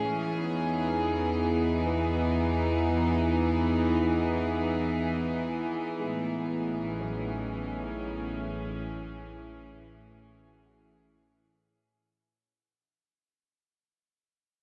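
Serene and warm, this slow ambient fragment in 3/4 at 60 BPM, cut from a longer piece, moves from Emaj7 to Amaj7 in a dreamy mix soaked in lush hall reverb. A bright, earthy chamber string section holds sustained bowed chords up front with a shimmer reverb, while a round, deep analog bass with a wave-folded edge sits beneath until 11.9 seconds. A very quiet felt-muted upright piano plays soft, intimate arpeggios with audible action noise, carrying on alone after the strings stop at 12.0 seconds and through to 13.8 seconds, as the fade-out that begins at 4.0 seconds draws the passage away.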